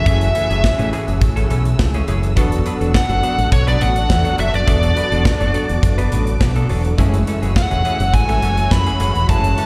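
Heard through a venue's PA at a live gig, this short cut from a longer piece carries a recital-hall reverb over a small-room ambience. It is early-eighties boogie funk in F# minor at 104 BPM in a straight 4/4, with a late-night, funky mood as the harmony moves from F#m9 to E9sus4 at 2.4 seconds and back to F#m9 at 7.0 seconds. Up front, a nasal lead guitar with a parked wah carries the melody in an overdriven, picked tone with slapback echo, while a fingered electric bass, direct and amped through an envelope filter, sits prominently beneath it until 9.5 seconds. An acoustic modern studio drum kit plays hi-hat, kick and snare from 0.1 seconds, sounding airy and polished with a tight kick and a medium-tuned snare. A punchy polysynth comp built from detuned sawtooth and pulse waves adds a filter sweep, a moving notch, fast attack and chorus, and a clean, compressed semi-hollow electric guitar plays a fingered riff with subtle chorus and slapback echo. 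In the background, a lush bowed string section holds sustained chords with vibrato and a smooth top.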